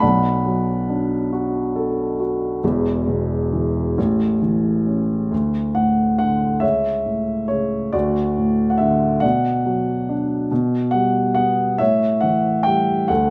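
A dark, mellow baby grand piano sits up front in a moderate recital hall reverb, its long sustain carrying a tender, peaceful classical solo in a rubato 6/8 at 46 BPM that spans E1 to B5, settling into D major at 5.3 seconds across this 13.3-second cut from a longer piece.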